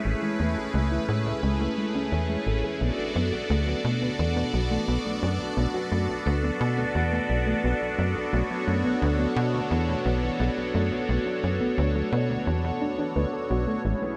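A tight, punchy sequencer bass riff with analog delay drives this expansive, hypnotic stretch of ambient space music at 87 BPM in B dorian, set against a swirling, detuned analog pad whose phaser and chorus colour sustained Amaj7 and Bm7 chords, while a round, tine-like thumb-piano-style synth pluck sits in the background playing arpeggios under a filter sweep, the whole bathed in a huge, wet reverb.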